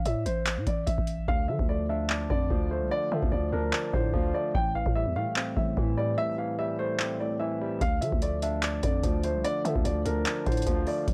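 A dry, gritty hardware recording with a digital ambience frames this dark, menacing trap excerpt in D minor at 147 BPM, played with a half-time feel. A growling, buzzy 808-style bass sits under a booming analog drum machine with a deep kick, metallic hats and handclaps roughened by vintage 12-bit sampler grit, while an intimate grand piano carries the melody through analog delay, its action noise audible and its notes sustaining long. From 1.3 seconds a barky, overdriven tine electric piano, pushed through a combo amp with subtle chorus, adds accompaniment over chords moving from Dm to Am7 and back to Dm, and the hi-hats drop out until 7.8 seconds, with a break starting at 6.2 seconds.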